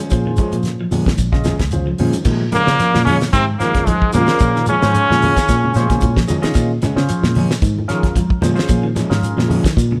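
Hypnotic and intense, this afrobeat excerpt rides a swung groove cut from a longer piece, driven by a dry, up-front 70s drum kit with a fat snare, tight kick, hi-hat and crash, and anchored by a dark, round, foam-muted fingered bass. Congas with a thin, medium-tuned skin and a grainy, saturated shekere sit in the background, while a barely broken-up electric guitar adds dark stabs and a clean, hollow-body semi-hollow guitar picks tremolo-tinged arpeggios. A barky tine electric piano, bright and clean through a combo amp, fills in the harmony with a phaser over a Bbm7 chord. At 2.5 s a horn section enters, led by a brilliant, nasal trombone with a straight mute, up front with vibrato and scooped notes. It is shadowed in the background by a distant, roomy bass trombone and a punchy, vintage alto saxophone, and the horns drop out at 6.3 s, leaving the rhythm section to carry on in a large studio reverb.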